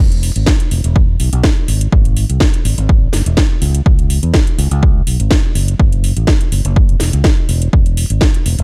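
A dry, gritty cut from a longer piano house track, joyful and feel-good with a light swing, where an up-front fingered electric bass pumps against the sidechain from the start, a punchy, tape-kissed electronic kick drives from 0.5 seconds, and an overdriven house kit adds cracking snare and metallic hi-hats.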